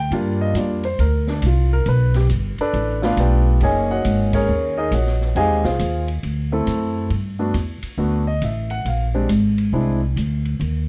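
A relaxed, swinging jazz piano trio fragment opens with a warm, up-front concert grand piano carrying the melody through plate reverb over a woody pizzicato upright bass, soon joined by a softer drum kit of ride, hi-hat, medium-tuned snare and punchy kick, with a band accent at 4.3 seconds before the piano takes a solo from 7.1 seconds, all in a dark, lightly reverberant production.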